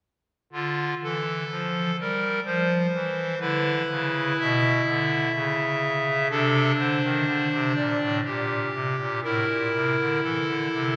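In an unhurried 3/4 at 62 BPM, the pulse breathes freely with rubato, giving this chorale-style classical piece in D minor a solemn, dark gravity. The only voice is a pipe organ played on a clarinet reed stop, a hollow solo stop with a romantic voicing, sounding from about 0.5 to 11.0 seconds across a range from A2 to E5. Though the organ sits up front in the balance, the listener seems placed further back in the room, and a wet church reverb with a 3.4-second decay lets each chord hang in the air. The harmony moves from D minor through an open fifth on E, a brief chordless moment, then D over C and G minor over B-flat, before settling on a suspended A chord. It is a short fragment cut from a longer piece, tuned slightly low to A4 = 439 Hz.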